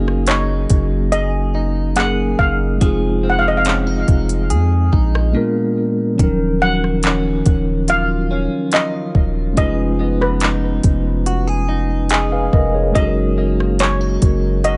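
A dry recording with a softened top end frames this moody, longing contemporary R&B excerpt in a straight 4/4. A shimmering, airy steel pan with delay carries the melody over a mellow tine electric piano, bright direct-recorded clean guitar arpeggios through lush chorus, and a deep, sine-toned 808-style bass whose long notes decay, while an up-front smooth R&B kit of soft kick, smooth hi-hat, rim clicks and handclaps sits loudest in the mix. The drums drop out between 5.3 and 6.2 seconds as the harmony moves from Gb69 through Fm7 and Bb7b9 to Ebm9 and Db9/F before returning to Gb69.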